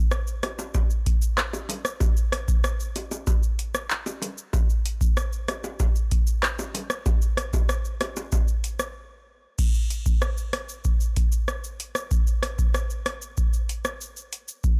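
This dancehall excerpt moves at a straight 95 BPM in 4/4, with a bouncy, sultry mood. A booming analog drum machine sits up front, its deep kick and tape-warm tone carrying metallic hi-hats, handclaps, rim clicks, shaker and crash cymbal. Tight, high-tuned acoustic bongos join at 0.4 seconds, softly played with a vintage, band-limited character, sitting further back than the drums until they stop at 8.5 seconds. A short break arrives at 9.0 seconds before the groove moves into a new section. A digital ambience surrounds the whole track.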